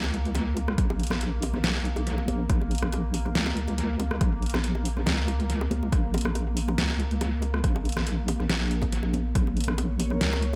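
Dark and meditative, this deep dubstep excerpt moves at 140 BPM in a swung half-time feel in Bb phrygian, built on an up-front, square-and-sine wobble bass with chorus beneath a mellow, slow-attack sawtooth pad that holds sustained chords. An overdriven, punchy electronic kick joins at 0.8 seconds over a dubstep kit that has played since 0.1 seconds, with hi-hat, rim click and a deep snare re-recorded in a large room with analog delay, while bright, dry bongos and congas with dub echo sit in the background. Near the close, a reversed granular swell rises at 9.6 seconds and a breathy, flute-like synth lead with vibrato touches Bb4 at 10.1 seconds, all within an echo-heavy mix.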